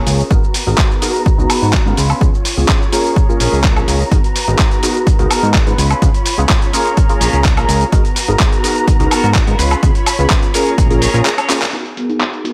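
A punchy, tape-warm electronic kick sits up front in this groovy, sensual slice of filtered disco house, driving a straight 4/4 at 126 BPM in G# dorian. Beneath it, a fat, detuned analog bass blends sawtooth, square and sine tones with wave-folded saturation and a plucky filter attack. A gritty, overdriven sampler-style kit adds handclaps, hi-hat, shaker and woodblock, its hats and percussion pumping against the kick and dulled by a low-pass filter. A funky polysynth comp with chorus and phaser, a clean picked electric guitar riff shimmering with harmonic tremolo in the background, and a dark, bowed chamber string section with expressive vibrato all pump together, cycling through G#m9, C#7 and A#m7. A filter sweep runs across nearly the whole passage under light digital reverb, the kick dropping out at 10.9 seconds and the bass at 11.2 seconds before a brief break, a drum fill at 11.5 seconds and a band accent close this cut from a longer piece.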